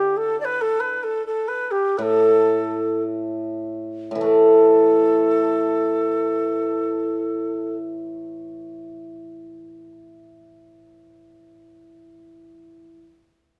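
Closely miked and detailed in a moderate recital-hall reverb, this graceful, pastoral Chinese chamber excerpt in a free rubato 2/4 slows from 0.2 to 4.2 seconds and pairs an airy, reedy bamboo xiao melody, which falls silent at 7.8 seconds, with a shimmering, ringing hammered dulcimer accompaniment low in its range that carries on alone until 13.0 seconds.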